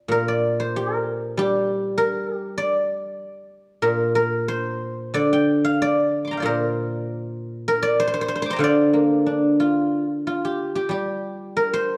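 Chinese traditional solo plucked-string music with a longing, elegant mood: a fingerpicked guzheng sits up front with a silvery, ringing tone, moving freely in rubato through a dark, reverberant recital-hall space across this 12-second fragment of a longer piece, and turns to a new section at 10.3 seconds.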